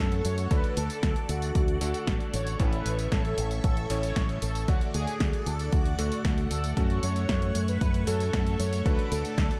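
A mellow, detuned synth brass melody opens this playful, danceable italo disco fragment at 115 BPM, over lush, phased string-machine chords, clangy vintage electric grand piano stabs in the background and a brilliant, up-front fingered bass with an envelope filter moving through F#m, D and A, while a tape-warm house kit of hi-hat, snare and tambourine joins at 0.1 s and an overdriven, punchy electronic kick enters at 0.5 s, all set in a dark production with light digital reverb.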